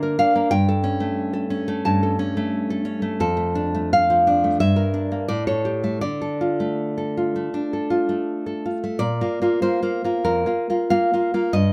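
Rubato in 4/4, this wistful, melancholic romantic piece for solo classical guitar unfolds with a freely breathing pulse across a brief fragment cut from a longer work. A single nylon-string guitar, fingerpicked and placed up front with a warm, acoustic tone, ranges from low F2 to high A5 as its minor-leaning harmony moves toward a settled Dm at 6.0 seconds. A moderate small-room reverb adds intimacy before a new section opens on Bb at 9.0 seconds, and the passage ends at 11.7 seconds.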